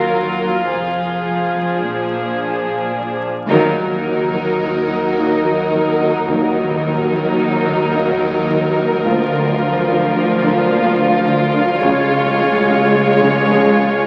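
Uneasy and tense, this cinematic suspense cue moves at 108 BPM in a straight 5/4, cut from a longer piece and settling into Eb minor from 3.5 s. Bowed strings played sul tasto carry it from the start: a close, intimate violin section sings the melody while a pure, floating violin section sits up front with a second line, violas fill in the accompaniment, and two dark cello sections split a riff and a woody bass line beneath a deep, round sub bass drone and a very quiet double bass section entering at 0.7 s. A shimmering, ethereal pad hangs in the background with sustained chords, its detuned, warbling tone colored by chorus, phaser and its own reverb. At 3.5 s the music lands with a band accent and an impact as very quiet mellow French horns and trombones join on sustained chords and hard-stick taiko drums enter, and from 3.7 s a huge, dark sub drop rumbles until 6.3 s. The harmony drifts from Ebmadd9 through Fm and Bb7 into Eb minor, later shifting to Bb/D and Db. 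A moderate scoring-stage reverb surrounds the ensemble, while the crackle and faint hum of a very old 78 rpm record give the whole recording an aged, haunted patina.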